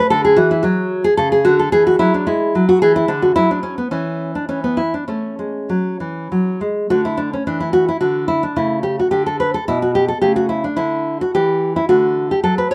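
A light reverb surrounds this brief classical excerpt, a baroque-style dance in 3/4 for solo nylon-string guitar. The guitar sits up front and sounds warm, with fresh strings and a deep classical tone as it is fingerpicked across a range from B2 to C#5. The mood is serene and flowing, and the tempo moves freely between 98 and 113 BPM with a rubato feel. The passage begins in A major with rich chords such as Dmaj9#11 and E7, then turns toward D major at 6.9 seconds, where a second pass through the same opening material begins. It settles through A/C# and comes to rest on D at 11.9 seconds before the cut from the longer piece at 12.7 seconds.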